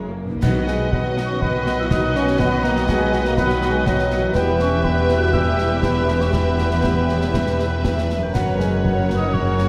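A straight 4/4 pulse at 121 BPM drives this heroic, adventurous cinematic film-score excerpt in B major, where a rich violin section carries the melody over B, Em and F# chords from 0.4 s, supported by a dark clarinet, a hollow silver flute, a mellow cor anglais and a second, lush violin section on secondary lines, while a very quiet viola section accompanies and a bright trombone section and a distant French horn section hold chords beneath ringing harp arpeggios and stabs from a warm trumpet; a focused double bass section and a soft-attack cello section anchor the bass, and concert snare, dusky clash cymbals and bass drum join a round timpani that sounds only from 0.4 to 1.1 s, set in a moderate scoring-stage reverb.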